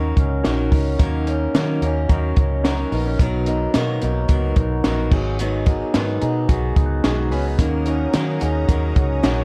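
Jangly indie pop at 109 BPM with a nostalgic, youthful mood, built on D#m7 and G#m7, where a punchy, up-front cocktail drum kit with a high-tuned snare and a round, foam-muted bass drive picked steel-string acoustic guitar, chorused synth keys that fill from 6.5 to 7.6 seconds, and twangy, slightly broken-up electric guitar arpeggios, before a lush, detuned pad enters in the background at 7.6 seconds, all in a dark production with light studio reverb in this fragment of a longer piece.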